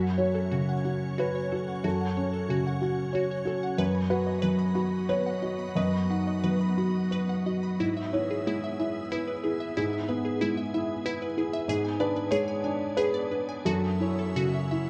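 Melancholic and fragile, this neoclassical piece for piano and synthesized textures moves in a rubato three-four lilt, cut from a longer work. A felt-muted upright piano sits up front as accompaniment throughout, its thick felt giving a mellow, intimate tone with short sustain and audible action noise. Beneath it, a soft, organ-like pad holds sustained chords with a slow attack and long release, pure yet slightly detuned, colored by ensemble chorus and its own reverb. A glassy wavetable pluck spins crystalline arpeggios above, with a fast attack and decaying tail, thickened by chorus and a slapback echo. The harmony drifts from F# minor through B over F#, E over G# and G# diminished before settling on F#m7 at 13.7 seconds, all within a moderate recital-hall reverb and a dark, warm production.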